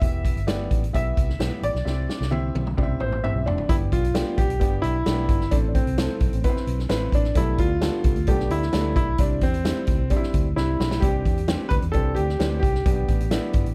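Passionate and driving, this fragment of uptempo 1960s-style soul sets a polished, up-front concert grand piano melody with deep bass over a woody, intimate upright piano accompaniment whose action noise is audible, a dark, round, foam-muted electric bass, and a natural big-band drum kit with a boomy kick that plays fills at 1.9 and 10.6 seconds, with the grand piano featured as soloist for the opening 3.7 seconds in a small room ambience.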